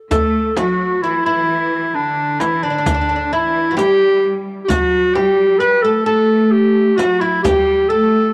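Hypnotic and melancholic, this short excerpt from a longer Turkish makam ensemble piece moves at 131 BPM counted in eighths in a straight 10/8, set in A makam huseyni. A mellow, distant classical-style clarinet carries the solo melody up front, while a woody, fretless, plectrum-plucked oud with double strings and a lush bowed cello section, focused and smooth-topped with vibrato and a slapback echo, play second lines beneath it. A crisp, saturated metal-shell darbuka, a close and dry frame drum played with hard hands in the background, and a riq with dark jingles drive the percussion, the frame drum and riq dropping out at 7.7 s, all within a long, wet plate reverb.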